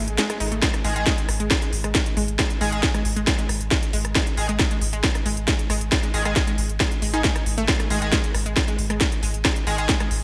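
A faint electronic swell opens this dark, driving peak-time techno excerpt alongside a punchy, detuned unison pluck riff and a round, tube-saturated sub bass, before a heavy layered electronic kick lands at 0.6 seconds and an edgy sync-sweep polysynth adds bright, chorused stabs from 0.8 seconds over an up-front kit of cracking snare, rim click and smooth, pumping hi-hats with gated reverb, the mix sitting in light digital ambience with a bright 1980s-style production.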